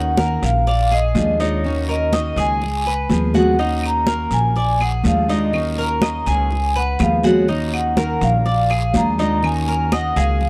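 A ringing vibraphone with medium hard mallets carries the melody in this danceable, nostalgic Cuban son and guajira excerpt, its metallic tone shimmering with a slow motor vibrato in a boxy small room. Beneath it, a full-bodied fingerpicked jumbo steel-string guitar supplies accompaniment while a Cuban tres adds picked arpeggios on its double strings, some doubled at the octave. An up-front upright bass with gut strings gives a dark, thumpy pizzicato foundation as the harmony circles between Ebm7, Bb7 and Db7. High-tuned congas played with hard hands and a raspy guiro join at 0.2 seconds, and woody claves sit in the background from 3.8 seconds. The sound is close and detailed with little reverb, giving the whole a dry, intimate straight-feel groove.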